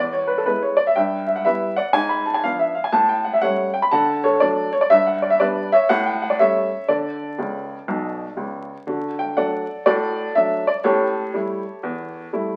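Jazz stride piano, exuberant and playful, swinging at 121 BPM in 4/4 and in D major, cut from a longer piece. A solo upright piano carries the whole passage, clear and woody with audible action noise and a short sustain, placed up front in an intimate, natural sound. It spans a range from B1 to B5, and around 7.4 to 8.9 seconds it plays a fill that leads into the next section at 8.9 seconds. The harmony moves through chords such as E, G#dim7 and A7 before settling on D, returning to D and A7 in the closing stretch. A wet studio reverb surrounds the piano, and the sound carries the crackle of a very old 78 rpm record.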